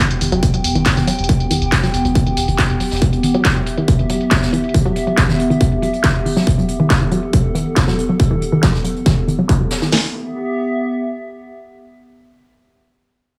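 A distorted, up-front techno kit with a cracking snare drives this dark, industrial peak-time techno excerpt, joined by a second techno kit of low-pass-filtered handclaps and hats, a distant brushed jazz kit with a high-tuned snare, a punchy detuned sawtooth pluck riff run through cassette tape and dub echo, a warbling lo-fi pad that lingers until 11.6 s, and a thick saturated sine sub bass heard only from 0.2 to 3.0 s, while a filter sweep moves across the drums inside a moderate stone room.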